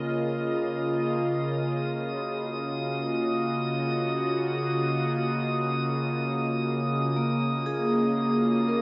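An evolving, detuned wavetable pad sits up front, holding full-bodied, warbling chords on an Ebmadd9/Db harmony with a slow attack and long release, thickened by chorus. Behind it, a vibraphone played with medium mallets rings out metallic arpeggios through slow motor vibrato and diffuse delay, while a calm, glassy texture of drifting overtones hovers high above. This luminous, warm ambient excerpt from a longer piece is bathed in a huge, wet reverb with a softened top end.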